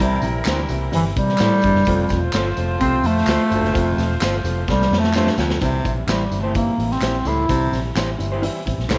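A mellow, close-miked bass clarinet carries the melody up front with light vibrato in a jazz style, soloing through the first 5.6 seconds of this uplifting, uptempo 1960s-style soul excerpt, while a breathy, whispered baritone saxophone riff and a tight, clear horn section sit in the background until the horns stop at 5.3 seconds. Underneath, a dark, woody upright piano, a round, foam-muted fingered electric bass and a raw garage drum kit with a punchy kick and saturated, gritty sound in a pumping stone room drive the straight 4/4 groove, joined by tambourine, egg shaker and group handclaps. A slightly broken-up, lo-fi electric guitar adds stabs from 0.5 seconds, and a drum fill leads into the next section at 5.6 seconds, all under light reverb with a faint mains hum.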